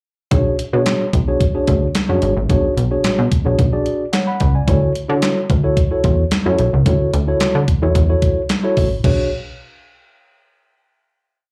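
From 0.3 s a clean 12-bit drum machine, a plucky analog bass and a mellow tine electric piano start together in a slick, late-night early-eighties boogie funk groove at 110 BPM in B dorian. The sampler-style beat pairs a thumpy kick with a medium-tuned snare layered with handclaps, plus hi-hat and crash. Under it the punchy, wave-folded, ring-modulated bass plays a fat syncopated line with muted ghost notes, while the electric piano adds rootless syncopated chords and short fills, moving from Bm69 to Dmaj9, with plate reverb and slapback echo. The whole piece comes across like a live gig heard through a club PA. The band lands on a final Bm69 at 9.0 s, the parts stop around 9.3 s, and the final chord section lasts until 11.2 s.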